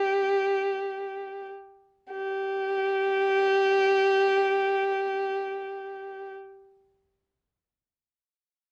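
Turkish makam ensemble music, festive and passionate, in a short cut from a longer piece, where a single bowed violin plays solo from 0.0 to 6.3 seconds, dark and woody with vibrato, held up front with cassette tape coloring, slowing down over the first 2.1 seconds before moving into a new section, all captured in a home cassette recording with light reverb.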